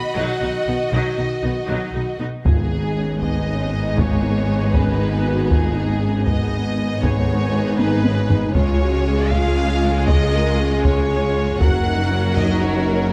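Close, detailed microphones and a light reverb frame this relentless, dramatic stretch of epic orchestral film score, cut from a longer piece and moving at 79 beats per minute in a swaying 6/8 in G# dorian. Two lush violin lines carry the tune, the melody smooth and distant with rich vibrato while a focused second line sits just beneath it. A dark, roomy French horn section holds sustained chords from the start, and from 0.2 seconds clear violas fill the middle, woody cellos murmur in the background and a biting, intense double bass section anchors the low end. At 2.5 seconds the harmony settles from B onto G#m as a taiko ensemble with heavy sticks thunders in, joined by a brief, dry timpani stroke on G#2. A drum fill around 7.8 seconds pushes the music toward C# and then F#, carrying the cinematic tension through to the cut.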